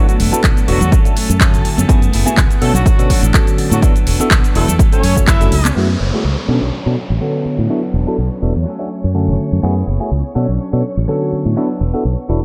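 Filtered disco house at 124 BPM in 4/4, riding a gentle 16th-note swing, with a nostalgic, sensual mood in this cut from a longer piece. A punchy, tape-warm electronic kick sits up front with a layered house kit of handclaps, warm hats and shaker, while very quiet tambourine and congas add soft-handed acoustic colour; during a drum fill and a band accent the kick drops out at 5.4 seconds, and the kit and percussion follow around 5.7 seconds. A bright, growly fingered electric bass drives underneath, joined by a bell-like tine electric piano with phaser and 12-bit sampler grit, a clean semi-hollow guitar riff tucked in the background, and a lush vintage string machine with ensemble chorus holding sustained chords. A brilliant horn section carries the melody with vibrato and octave doubling, coloured by tape echo, until it stops at 5.8 seconds, when a filter sweep takes over and an electronic downlifter passes through. 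The pitched parts share sidechain pumping and low-pass filtering over a cycle of lush extended chords such as E9sus4, Dmaj7, F#m11 and Bm9, all set in a digital ambience.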